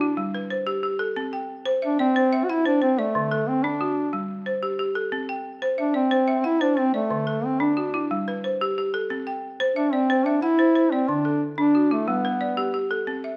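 A moderate recital-hall reverb surrounds this joyful, hypnotic West African traditional passage, cut from a longer piece and moving at 121 BPM in a straight 12/8 in C Lydian. Up front, a woody, buzzing balafon struck with hard rubber mallets spins dry, mid-forward arpeggios, while a mellow duduk sings the solo melody in folk style with vibrato and scooped notes. The chords circle through G, C and D with a brief Gsus24, and the balafon rings on alone after the duduk stops at 12.7 seconds, until 13.4 seconds.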